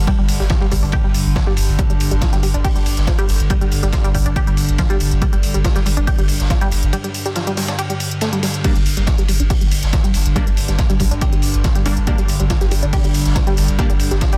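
A dry, punchy electronic kick drives this industrial, peak-time techno excerpt at 140 BPM around a G5 chord. It is underpinned by a deep, saturated triangle sub bass and a nasal, evolving analog drone. A tight, wave-folded sequenced synth riff is sidechain-pumped, with chorus, phaser and tape echo. A layered, overdriven techno kit adds smooth hats and crash. A dark, rolled-off acoustic street-band kit with high-passed hats, ride and snare sits low in a small room. After a break from 6.9 to 8.6 seconds, an aggressive, detuned, warbling rave stab arrives with chorus, reverb and tape echo in a dense, heavily limited master.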